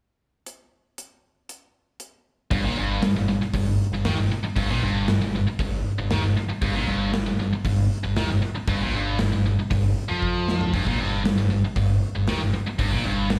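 Menacing and driving, this hard rock excerpt moves at 117 BPM in a straight 4/4, sitting in G minor with the tuning pitched slightly sharp at A4 = 445 Hz. A gated 80s drum kit opens alone at 0.5 seconds, its hi-hat, punchy kick, medium-tuned snare and toms sounding in a bright, gated stone room and held up front. At 2.5 seconds the band lands on G minor as a high-gain distorted guitar enters with a double-tracked, picked riff between G2 and F3, its crunch thickened by slapback echo and placed up front. Alongside it comes a growling picked electric bass, round and overdriven, running from G1 to F2 with a punchy, direct-and-amped tone. A drum fill at 10.2 seconds breaks up the groove before the passage cuts off at 13.4 seconds. The sound is that of a live gig heard through the venue's PA, with club reverb and small room ambience.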